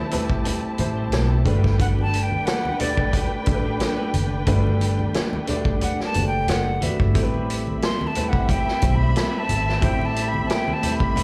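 Silky and bittersweet, this excerpt of lush 1970s-style soul has a gentle swing and sounds like a live club gig heard through the venue's PA. A dark, mellow baby grand piano and veiled, con sordino strings sit in plate reverb and slapback echo over Am9 and Gmaj9 chords. Around them, a gritty vintage drum kit, bright low-tuned congas in the background, a faint twangy guitar riff through a small old amp and a round, punchy foam-muted bass entering at 0.8 s fill out the groove. A breathy, close-miked silver flute carries the expressive melody from 1.8 s, also bathed in plate reverb and slapback echo, and a fat, lightly overdriven tonewheel organ adds very quiet sustained chords from 7.2 s.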